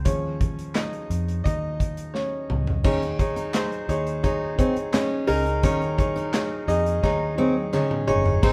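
This piano-driven pop excerpt has a warm, anthemic mood, moving at 86 BPM in a straight 4/4 and tuned slightly below standard pitch. A clear, woody upright piano sits up front and carries a solo passage over an Eb7sus4 harmony, supported by a round, punchy, foam-muted vintage electric bass and a tight, acoustic studio drum kit with a medium-tuned snare and a rolled-off top. Drum fills close the opening stretch and return near the end, with crash cymbal, hi-hat, toms and handclaps woven into the kit. At 2.8 seconds a full-bodied fingerpicked steel-string jumbo guitar adds a riff, and from 3.5 seconds a hollow, distant group handclap sits very quiet in the background. At 8.4 seconds a dark French horn section with light vibrato appears as a barely audible second line. The band sounds as if playing live together in one room, with light reverb.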